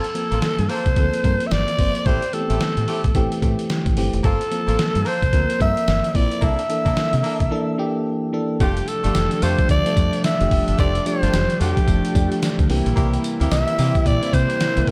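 New jack swing R&B with a flirty, bouncy, swung feel, in which a breathy, raspy alto saxophone sings the up-front melody over a compressed sampler-style drum kit with a thumpy kick, fat snare, hi-hat and tambourine, and a deep, round, punchy fingered electric bass. A glassy, bell-like FM electric piano with chorus fills in the accompaniment, while a smooth jazz-style horn section adds short stabs touched with slapback echo. After a break from 7.5 to 8.6 seconds, a shimmering, retro pulse-width pad enters softly in the background, and the whole cut sits in a big arena-like reverb.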